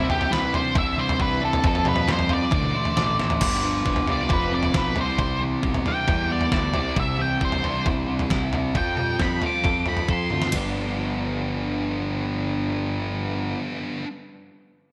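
Upbeat and carefree, this indie rock passage at 135 BPM in G mixolydian is cut from a longer piece and driven by a detuned 8-bit digital drum machine, its thumpy kick and medium-tuned snare overdriven, re-recorded in a small room and placed up front. A thick fuzz guitar carries a dark, distorted riff alongside a clean, compressed twelve-string electric guitar with subtle chorus and digital delay sitting in the background. A punchy fuzz picked bass, overdriven and recorded both direct and amped, holds the low end. The octave-fuzz lead guitar, dark and up front with distortion and digital delay, takes a solo from 3.4 to 10.5 seconds, reaching up to D6 over chords moving from G7 through F, Cadd9, Em and Fadd9. Just before that, a dry, bell-like glockenspiel played with soft plastic mallets rings briefly in the background, and drum fills mark the turns before the lead drops out and the guitars carry on to the close at 14.1 seconds. 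The bright 1980s-style digital production is bathed in a lush hall reverb.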